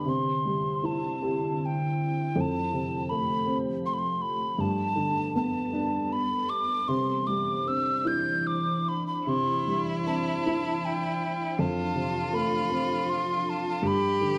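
An airy, hollow tin whistle with vibrato carries the melody of this wistful, nostalgic Celtic slow air, drifting in a rubato 3/4 around 74-83 BPM and tuned to A4 = 445 Hz. Beneath it, a dark, woody upright piano with audible action noise and a glassy, ethereal FM pad with chorus and a slow attack move through gentle add9 harmonies. A focused, bowed solo cello enters at 9.3 s with a second line, all set in a moderate scoring-stage reverb with a dark, warm production, in a passage cut from a longer piece.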